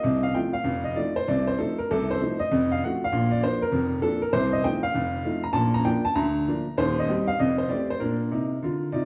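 A clear, woody upright piano plays alone from the start, a brisk stride jazz piece in Bb major at 196 BPM with a swung, exuberant and playful bounce, ranging from deep Eb1 bass notes up to Bb5. Its boxy, up-front tone sits in a large studio with a lush reverb, and vinyl crackle lends an old-record patina. The harmony circles between F7 and Bb before settling on Bb at 8.0 seconds, and this short excerpt is cut from a longer piece.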